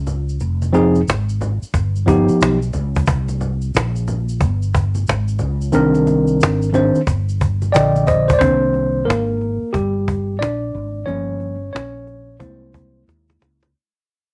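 Swung sixteenths at 90 BPM in 4/4 drive this nocturnal, mellow jazz-hop cut in C minor: a woody cajon with faint snares and a cassette-tape character sits close and dry up front beside a dark, round, punchy fretless bass coloured by ensemble chorus, while bright, vintage congas and tube shaker played with soft hands drop away at 8.4 s, where a worn, slightly out-of-tune tine electric piano moving through chords like Fm7, Cm9 and C7alt takes a solo as the track fades out, before a cajon fill at 13.1 s closes this piece, lifted from a longer work and heard as a home cassette recording with light reverb.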